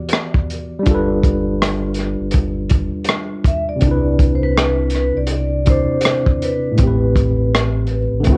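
A swung 81 BPM lo-fi hip hop groove in 4/4 rides on a crunchy, gritty breakbeat kit of tight kick, hi-hat and rim click, while a worn, slightly out-of-tune tine electric piano, lightly overdriven and low-pass filtered through cassette tape, sits up front with Em7, G9, Cmaj7 and Am9 chords in G major. A deep sine-and-triangle sub bass with octave enters at 0.9 seconds, and a metallic, ringing vibraphone with medium hard mallets and slow motor vibrato carries the melody from 3.5 seconds, dressed in plate reverb and cassette grain in a boxy small room. Dreamy and nostalgic, this fragment of a longer piece has the feel of a home cassette recording with light reverb.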